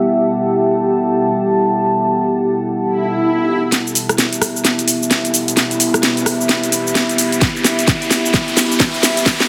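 Two moody pads open this bouncy, swaggering bass house excerpt on a sustained minor chord, one a detuned, wave-folded analog layer with subtle chorus and the other a deep ambient bed with chorus and its own reverb, both pumping against the sidechain, until an electronic swell rises at 3.0 seconds, leading into a build-up at 3.7 seconds where an up-front, low-pass-filtered house kit of cracking snare, metallic hats, rim click and cabasa plays a swung drum fill under a riser, joined at 7.4 seconds by a punchy layered kick, all set in a lush hall ambience within a dense, heavily limited mix.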